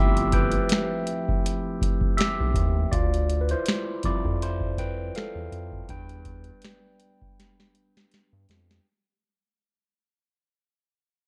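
A dark, dry production frames this smooth, soulful neo-soul R&B fragment, cut from a longer piece and fading out across its whole 8.8 seconds, with a gentle sixteenth-note swing. Up front, a gritty, barky overdriven tine electric piano with phaser plays a solo over chords moving from G13sus4 to Dm11 to Em7, while a round, mellow analog bass holds down the low end. A booming analog drum machine, with a deep kick, crisp snare, metallic hi-hat and finger snaps, carries the groove and closes with a fill from 7.4 seconds.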